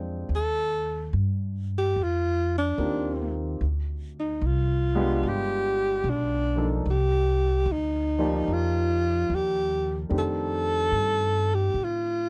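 A breathy alto saxophone carries the melody up front, its mellow subtone and vibrato close-miked so every breath sits near the listener. This tender, late-night jazz ballad moves at an unhurried pace with a swing feel on the eighth notes, tuned slightly below standard pitch. A warm baby grand piano supplies polished, present accompaniment through chords that move from Eb69 to Dm7b5, G7b9, Cm11 and F13. The upright bass is plucked, woody and growly, with the warm tone of steel strings, and is placed up front beneath the harmony. The sound is dry and intimate, like a close 1970s studio recording, and this 12.3-second passage is cut from a longer piece.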